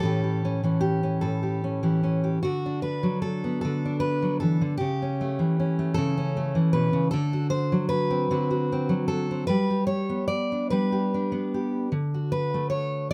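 In a loose, rubato 6/8 lilt, this peaceful and hopeful folk excerpt features a solo fingerpicked steel-string dreadnought guitar, full-bodied and up front, with audible finger squeak. It opens on an A7 chord, then at 2.4 seconds moves into a new passage through D6, A7/C#, D7 and G before settling on D. Light reverb gives the short recording a gentle sense of space.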